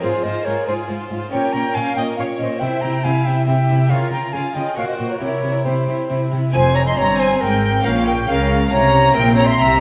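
A stormy, driving baroque-style concerto movement in F minor at 139 BPM in 3/4, heard in a resonant recital hall, where a pure, bright flute with soft-attacked vibrato carries the melody alongside a rich, smoothly bowed violin section, while a second violin section plays a second line. A close-miked, dry harpsichord of full Flemish character supplies accompaniment with an expressive viola section that slides with portamento, and a focused, lush cello section anchors the bass. At 6.5 seconds a clear, intense double bass section joins the low end as the harmony moves from F minor through B-flat minor to a C7 in this passage cut from a longer work.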